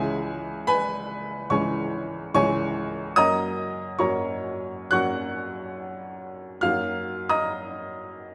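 Classical romantic character piece for solo piano in C# minor, passionate and lyrical, moving with a rubato feel at 62-74 BPM as a clear, woody, open upright piano sits up front spanning C#2 to Gb6 in a moderate recital hall reverb, its harmony passing from C#m to Gb at 3.2 seconds and to Ebm/Gb at 6.6 seconds in this short cut from a longer piece.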